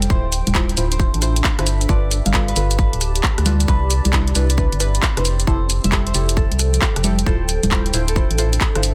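Bouncy and soulful, this short cut of two-step UK garage swings at 134 BPM over a Dm7, G9, Cmaj7, Fmaj7 progression, with a hollow, organ-like FM bass pumping up front beneath a tight, tape-warm electronic kick and a layered garage kit of congas, handclaps, hi-hat, rim click and shaker in a small room. Deep, mellow chord stabs are coloured by chorus, phaser and delay, while a bright, ringing concert harp carries the melody through delay. A cloudy granular pad drifts in the background with its own reverb and sidechain pumping, all within a dense, heavily limited master.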